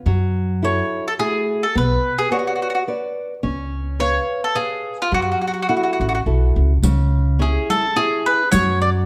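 Set in the moderate reverb of a recital hall, this romantic, passionate excerpt of an Italian folk serenade in a swung triple metre features a round, double-strung picked mandolin carrying the melody over a small, fresh-stringed fingerpicked nylon-string guitar and a dark, woody pizzicato upright bass, all close up front, until a close, dry riq with bright jingles joins at 6.8 s as the harmony moves to a new section.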